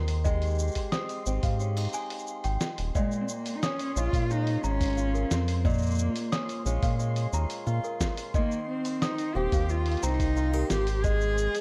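Playful and warm, this folktronica fragment from a longer piece rests on a boxy, fingerpicked acoustic guitar playing swing-style arpeggios with tape echo, a delicate, slightly out-of-tune celesta adding a bell-like second line through delay, and a round, deep analog bass sitting up front. A muffled, lo-fi sampler-style kit of hi-hat, shaker and fat snare runs alongside a thumpy electronic kick, which drops out briefly before a dark, woody bowed cello with vibrato takes the melody from 3.0 seconds. A faint, grainy, flickering texture lingers in the background as the chords move from Abmaj7 through Bbm7 and Eb6, all wrapped in a dark, warm studio reverb.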